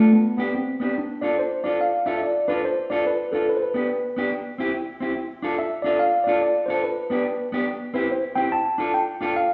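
A mellow tine electric piano plays the melody up front through its built-in speakers, with a dark, clean, fingered electric guitar also up front in accompaniment, in this mischievous, energetic ska fragment at 143 BPM in D dorian with a swung eighth-note feel; the band plays live in a small room wrapped in stone-room reverb, a brief opening passage gives way at 1.8 s as the harmony cycles through G, Dm and C, and the guitar drops out at 9.3 s just before the piano ends at 9.5 s.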